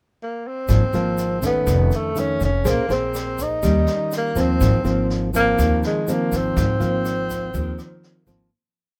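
A straight bossa nova groove at 123 BPM in 4/4 carries this short, relaxed and sunny piece in Ab major. The tenor saxophone opens alone with a pickup at 0.2 seconds, playing a mellow, breathy subtone melody up front, built from motif-based period phrases with light vibrato, soft attacks and scooped notes. At 0.7 seconds the band joins: the classical nylon-string guitar, also up front, thumb-plucks bass notes under syncopated chords with an audible finger squeak, while the woody pizzicato upright bass plays a dotted root-and-fifth line. A distant, roomy brush kit with a high-tuned snare, boomy kick, rim clicks and a rolled-off top sits back in the mix, and a grainy, bright egg shaker adds texture in the background. The harmony moves from Ab69 through Faug7, Bbm9 and Eb7 before resolving back to Ab69, in a dry sound with little reverb, and the music fades out from 6.6 seconds.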